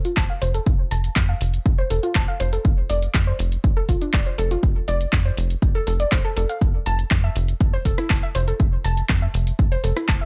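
Progressive house at 121 BPM in a straight 4/4, uplifting and expansive, moving from F to Dm/F before the harmony drops out at 6.6 seconds in this short cut from a longer piece. A soft, round pluck with a dark, gentle edge plays arpeggios under lush chorus, delay and sidechain pumping, while a tight, sawtooth-and-square sequencer bass with a moving notch drives along up front, also pumping. An overdriven big-room kit of handclaps, hi-hat and rim click runs from the start, joined at 0.2 seconds by a punchy, tape-tinged electronic kick that sits loudest, all in a dry, close sound.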